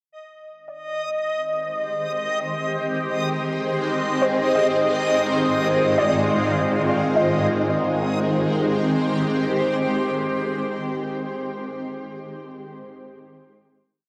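Drenched in a huge, long-tailed reverb and a worn, warbling cassette-tape sheen, this serene, weightless ambient piece drifts at 51 BPM in 3/4, in A-flat Lydian, moving between Abmaj7 and Fm7/Ab before settling on a final Abmaj7 chord at 7.1 seconds. A reversed, swelling texture holds one bright high note from the very start, while a shimmering, detuned pad with octave-up glimmer, chorus and phaser sits up front with slowly shifting sustained chords from 1.9 seconds. Further back, a soft, round, dark pluck scatters gentle arpeggio notes in the background through chorus and diffuse delay, both pad and pluck fading in over the opening.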